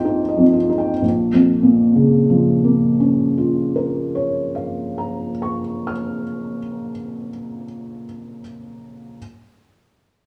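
In a rubato three-four lilt that slows through the first second, a solo felt-muted upright piano plays a wistful, melancholic fragment of neoclassical minimalist music. The piano sounds dark, boxy and intimate, sitting up front with its action noise clearly audible. It moves from an Ebadd9 over Bb to a Bb minor chord at 1.0 seconds, ringing into a wet stone-room reverb until 9.2 seconds.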